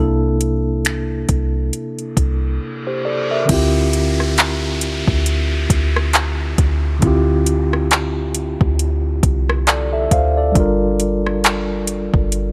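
A slow, swung sixteenth-note groove in four drives this moody, late-night contemporary R&B excerpt, with an electronic, produced drum kit entering at 0.4 seconds and sitting up front. Its soft kick, metallic hi-hats, finger snaps, handclaps, rim clicks and crash cymbal carry a gritty overdrive. Beneath it, a deep, round 808-style bass with a sine-like tone, fast attack and dark decay holds the low end. A mellow, clean tine electric piano, heard as if through built-in speakers, plays chords up front, moving from C13 to Dm11 at 3.5 seconds and on to Gm7 near the close. An electronic reverse cymbal rising from 2.4 seconds sets up that change, and a downlifter also sits quietly in the background. The dry sound keeps the whole mix intimate.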